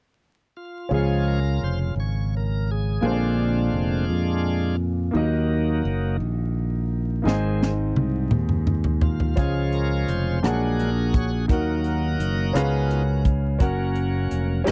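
Soulful and hopeful, this slow gospel passage in 6/8 at 57 BPM moves through Db major as a shouting, lightly overdriven tonewheel organ with key click and fast rotary speaker takes the solo in sustained chords, joined at 0.9 seconds by a clear, natural grand piano and a punchy, direct fingered electric bass up front, before a tight funk drum kit with a high-tuned snare enters on a fill at 7.3 seconds, all captured in a dry, close 1970s-style studio sound with vinyl crackle.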